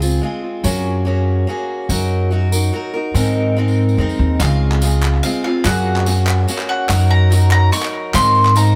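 Warm and uplifting, this short fragment of indie folk moves in 3/4 and builds through its first half. A bright, boxy parlour acoustic guitar, picked and up front with analog delay, carries the accompaniment through a cycle of Dbmaj7, Gbadd9, Ebm/Gb and Abadd9 chords. Underneath, a woody, thumpy pizzicato upright bass with gut strings sits prominently, while a jingly tambourine sounds distant, as if in a large room. At 4.4 seconds a mellow bowl-back mandolin enters with the melody, its double strings picked high and trailed by analog delay, and a group handclap joins with a human, hollow sound from a small room, also carrying delay. The mix has light reverb and an echo-heavy character that lends the acoustic parts a gentle sense of space.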